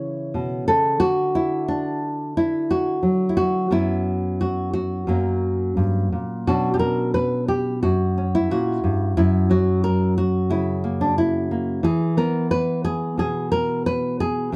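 Folk piece for solo fingerstyle nylon-string guitar, melancholic and intimate in mood, with a loose rubato feel in 4/4 and a chord path that moves through C#m, Dadd9 and F#sus4 before settling into Bmadd9, F# and E5 from 6.5 s. The fingerpicked guitar sits up front with a deep classical tone, ranging from F#2 to C#5 under light reverb. The 14.6-second fragment is cut from a longer piece.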